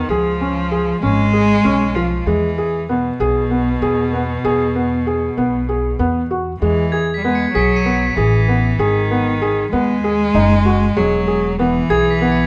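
A straight 7/8 pulse at 193 BPM, counted in eighths, carries this shimmering, hopeful contemporary chamber piece in E major, cut from a longer work: a felt-muted upright piano plays soft, intimate arpeggios up front beside a clear, focused bowed cello second line with vibrato, a woody pizzicato upright bass holds the low end, and bell-like crotales struck with plastic mallets add a ringing high texture from 6.9 s, all within a light reverb as the chords move from C# to E to G#m and back to E.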